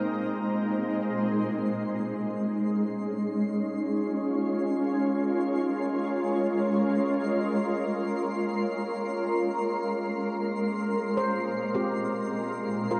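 Ambient and serene, this reflective excerpt from a longer piece is led by an up-front, shimmering, detuned pad holding sustained chords, while a calm organ-like drone in the background and a twinkling, sparkling granular texture both fade in from 1.3 s, before a ringing, band-limited handpan enters with delayed arpeggios at 11.2 s, the whole set inside a huge, wet reverb space.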